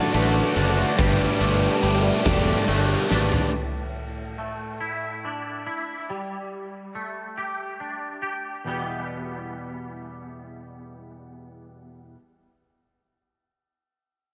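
A growly, fuzzed-out fingered bass sits up front in this cathartic, melancholic post-rock excerpt in E minor, moving at a slow 47 BPM in 6/8 with a huge arena drum kit, punchy kick and fat snare, driving the opening until a drum fill at 3.1 seconds. Behind them, a dark sludgy guitar and a bright garage guitar with phaser share an overdriven riff, while a ringing hard-mallet vibraphone with tape echo plays arpeggios and a very quiet bowed chamber string section holds sustained chords over Dadd9/A and Gsus2. A twangy clean electric guitar, shimmering with ensemble chorus and tape echo, arpeggiates from the very start. After the heavy parts stop at 3.5 seconds, it carries on alone through the change to Em until 12.2 seconds, all in a small, lightly reverberant room.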